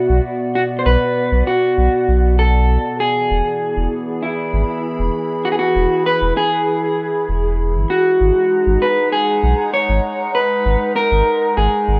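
IDM with a cerebral, glitchy mood, where a dark, slightly broken-up electric guitar carries the melody up front through dub echo over a warbling, nostalgic lo-fi pad with chorus, while a deep, round sub bass enters at 0.1 s beneath chords moving from Bm to E to G#m7, all set in a wet small room with a rough home-demo feel.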